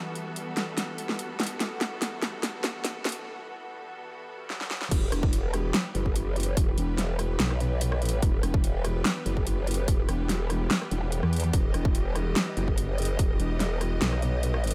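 Heavy wobble dubstep at 145 BPM in a half-time 4/4 feel, this chaotic, heavy excerpt sits in E harmonic minor on an E minor chord. A bright, lush studio string section holds sustained bowed chords with vibrato from the start, its sound pumping under sidechain compression. The dubstep drum kit enters at 0.2 seconds with a huge snare, metallic hats, rim clicks and crash cymbals, building through drum fills and a brief break before the drop lands at 4.9 seconds. There the growling, saturated bass arrives with an aggressive wobble shaped by a formant filter, overdrive and chorus, joined by a punchy, tape-toned electronic kick that plays until 13.3 seconds. Drums and bass sit up front in the mix, with a high-pass-filtered digital ambience around them.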